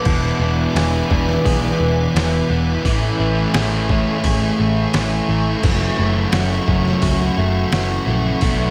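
Shoegaze and dream pop rock with a hazy, dreamy mood, this short cut moves through E7, Amaj7 and F#m7 over a straight 4/4 groove. Gritty, pitched-down sampler-style drums with a thumpy kick and overdrive sit up front, joined by a round, foam-muted bass, while a thick fuzz guitar and a background overdriven semi-hollow guitar washed in reverse reverb carry the riff. Set further back, a bright, clean direct-recorded guitar plays arpeggios through subtle chorus and digital delay, and an icy, crystalline pad holds airy sustained chords above it all in light reverb.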